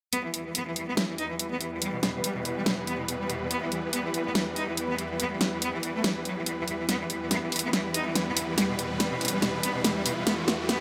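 A biting, nasal solo cello carries the melody with vibrato and delay in this chaotic, heavy wobble dubstep fragment at 142 BPM in E minor, set in a half-time feel with a light swing. Huge, detuned supersaw chords sustain underneath through a low-pass filter that sweeps until 6.9 seconds, while an up-front electronic drum kit drives with a huge snare and bright hats. From 6.9 seconds a build-up and drum fill begin, with a very quiet riser entering at 8.9 seconds, all inside a moderate digital room reverb.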